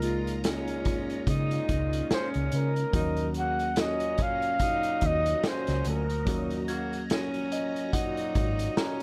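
A breathy flugelhorn carries the jazz-style melody up front with light vibrato and scooped notes until 6.7 seconds, when a soft, bell-like glockenspiel with plastic mallets rings briefly in the background of this cinematic, silky 1970s-style soul piece. Underneath, a worn, slightly out-of-tune tine electric piano plays accompaniment and adds a fill from 7.1 seconds, while a swirling, warbling string machine with ensemble chorus and phaser holds bright sustained chords behind distant, tight stabs from a mellow horn section with slapback echo. A dark, round, foam-muted electric bass and a punchy vintage drum kit with hi-hat, kick and a medium-tuned snare ride a swung groove in a small, pumping room.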